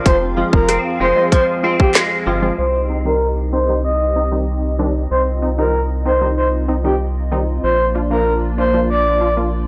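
Dancehall in C minor at 95 BPM, tough and bouncy, where an overdriven island pop drum kit with a tight kick, woody snare and metallic hats punches up front until 2.1 seconds, while a twangy clean electric guitar plays chorused, delayed arpeggios until 3.1 seconds. A deep, dark round analog bass and a soft, breathy flute-like synth lead with vibrato and delay sit forward, over crisp, detuned wavetable chord stabs and a hollow pad that pumps behind them. The harmony moves from Fm to Cm and then Bb, a filter sweep runs from 2.6 seconds, and the dry, gritty sound carries light digital ambience.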